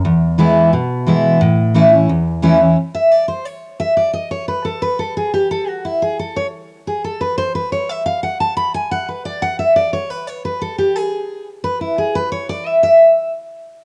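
Virtuosic and rustic, this short bluegrass clip, cut from a longer piece, races along at 176 BPM in a straight 4/4 in A major. A single picked steel-string acoustic guitar carries the whole recording, its dreadnought tone dark and full-bodied and placed up front. It covers a span from E2 to B5, opening over an E chord before moving to A at 1.4 seconds. At 2.8 seconds the harmony drops away and the guitar launches into a solo that runs to the end of its part at 13.3 seconds. Light reverb and a small room ambience surround the instrument, and the piece was captured as a home recording on cassette.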